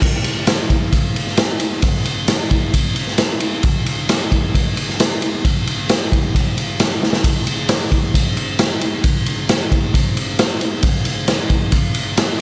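A saturated, up-front acoustic drum kit with a punchy kick, medium-tuned snare, ride and crash and a rolled-off top rings in a bright stone room under light reverb, driving a gritty straight rock groove at 133 BPM in 4/4 through this 12-second cut from a longer piece, with a drum fill at 7.0 seconds.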